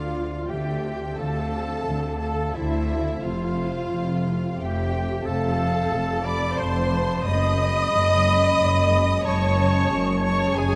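A close, lush violin section carries the longing melody of this bittersweet cinematic film-score excerpt, moving in a rubato 3/4 at 90 BPM, while a bright clarinet, a pure, distant flute and a second violin section weave second lines, dark violas add soft-attack accompaniment, mellow French horns hold background chords, and expressive cellos with double basses anchor the bass through Dm7, F and F#madd9, set in a vast, echoing cathedral space.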